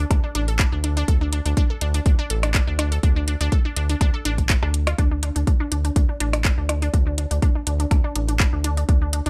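Dry, this hypnotic, sparse minimal techno excerpt has a punchy, up-front electronic kick at its center, joined by a house kit of handclaps and metallic hi-hats and by tape-echoed percussion blips that drop out at 8.0 seconds. A deep, round analog bass, tube-saturated and dark with a ring-modulated edge, pumps under the sidechain throughout. Above it, a squelchy, detuned resonant blip pluck plays a bright, filter-swept riff through chorus, phaser and tape echo.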